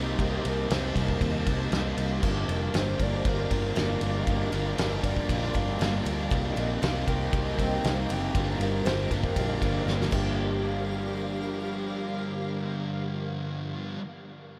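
A hazy, melancholic stretch of shoegaze-leaning dream pop opens on a soft, organ-like pad with tremolo and ensemble chorus, two riffing electric guitars (one slightly broken-up through a small old amp with reverse reverb, the other thick with fuzz and analog chorus) and a round, foam-muted bass, all moving between Cm7 and Gm7. A loose indie drum kit with a fat snare, tight kick and dark cymbals sits up front from 0.2 s to 10.2 s, closing with a fill, while a reedy, woody FM lead with vibrato and delay carries the melody and a very quiet, shimmering twelve-string acoustic adds octave-doubled arpeggios from 2.2 s. The mix is soaked in a huge ambient reverb, giving this cut from a longer piece a dreamy glow.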